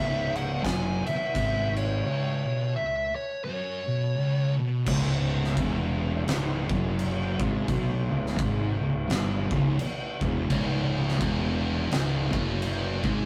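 A slow, swung 85 BPM stoner and doom metal groove in C# minor, brooding and sludgy, where an up-front fuzz lead guitar sings a compressed melody for the first 4.5 seconds over two dark picked fuzz guitar riffs in the background, a growly overdriven fingered bass, and an oversized low-tuned kit with a boomy kick, fat snare and dark cymbals in a pumping stone room, before a bright, double-tracked high-gain guitar joins at 10.5 seconds in this rough rehearsal-room cut from a longer piece.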